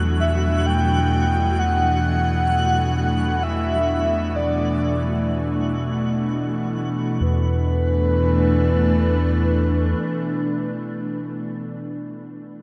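A huge, wet reverb bathes this reflective, serene ambient passage, cut from a longer piece and resting on a single Bm/E harmony. An evolving wavetable pad sits up front with sustained chords, its detuned, morphing tone bright and treated with chorus and its own reverb. Beneath it, a round analog bass holds a deep, dark low E, colored by tube saturation, until about 9.9 seconds. A twinkling granular texture adds sparkling octave-up shimmer high above, falling away at 7.2 seconds. From 0.2 seconds, a breathy, flute-like synth lead carries the melody with a soft attack, vibrato and analog chorus, sitting a touch quieter than the pad.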